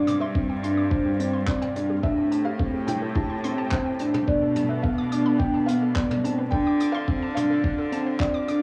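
A boxy, felt-muted upright piano riff sits at the heart of this short cut from a longer piano and strings electronica piece, moving at 107 BPM in a straight 4/4 in A minor with an intimate, melancholic mood. A second muted upright piano carries the melody higher up, its soft, dark tone dressed in cassette tape grit and tape echo, while a clear chamber cello section, bowed with light vibrato and saturated through tube warmth, holds the bass up front with an earthy feel and sidechain pumping. In the background, a lush, detuned unison sawtooth pad sustains chords with chorus and pumping, and a warbly, lo-fi pluck traces mellow arpeggios with chorus, pumping and tape echo. A distant jazz brush kit with handclaps, hi-hat and toms adds roomy acoustic texture, and from 0.4 s a pitched-down, muffled electronic kick thumps up front with overdrive and cassette coloring. The harmony moves through G7sus4, Am7, Bm7b5 and Dm7, all framed by light small-room reverb and a homespun cassette sound.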